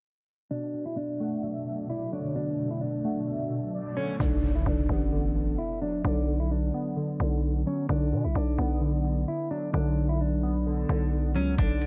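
At 0.5 s a mellow, clean electric guitar opens this eerie, menacing trap excerpt in B minor, playing a fingered melody through lush chorus and a low-pass filter over glassy digital keys whose detuned, wave-folded tone moves under a filter sweep. The tempo is 130 BPM in 4/4 with a half-time feel, and the harmony sits on Bm7 before settling on Bm. A cloudy, evolving granular pad soaked in its own reverb and a velvety synth lead with chorus, tape echo and vibrato float in briefly, both dropping out at 4.2 s. At that moment an electronic impact hits and a growling, buzzy 808-style bass takes over the low end, sitting up front in the mix. A trap kit with a knocking kick and crisp hats only arrives at 11.6 s, just before the cut. The production is dark, with light reverb and a digital ambience.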